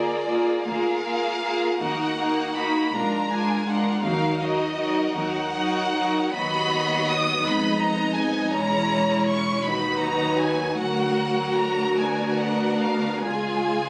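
Rich, expressive violins carry the lyrical melody up front, with a second violin section tracing a lower line beneath it, in this serene, rubato slow romantic movement for string orchestra in 6/8. A lush, smooth viola section fills out the accompaniment, also up front, while an even cello section and a clear, intense double bass section sit in the background, every part bowed with vibrato. Captured on a phone in the room with compression and a moderate scoring-stage reverb, the passage is cut from a longer piece and moves through shifting minor-key harmonies before arriving on C# at 13.2 seconds.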